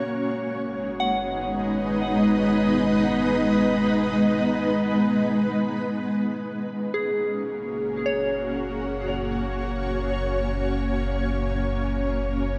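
Free-time ambient in F# major, tuned to A4 = 442 Hz, this luminous, weightless excerpt opens on an up-front, ethereal pad of detuned, airy sustained chords with ensemble chorus and tremolo, while a soft, pure FM synth bell with a warbling vintage chorus spins decaying arpeggios through a diffuse ambient delay. From 0.7 seconds a deep, ominous, wave-folded drone rumbles beneath on the bass. The harmony rests on G#m/F# before settling onto F# at 6.3 seconds, all within a wet cathedral reverb with a 6.2-second tail.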